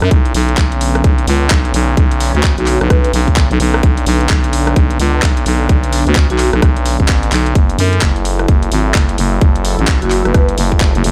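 A growling, thick FM bass with tube saturation and sidechain pumping drives this aggressive, swaggering bass house excerpt at 129 BPM, swung on the sixteenths, alongside a tight, up-front electronic kick and a garage kit of handclaps, bright hats and rim clicks in studio reverb. Behind them a sweeping, detuned sawtooth pad with chorus, 12-bit sampler grit and its own pumping sustains Bmadd9 chords, shifting to F#m7 at 7.6 seconds just after a drum fill at 7.3 seconds. Short metallic vibraphone phrases, played with medium mallets and a fast motor vibrato, ring out in the background.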